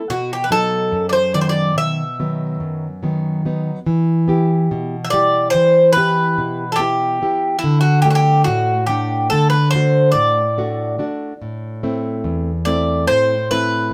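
In a straight 9/8 at 143 BPM, this reflective, wistful Greek folk excerpt in E minor sets a metallic, double-strung bouzouki melody over fingerpicked nylon-string guitar accompaniment with fresh strings and audible finger squeak, both up front in a live-room studio ambience as the chords move from B through Em, D and Am.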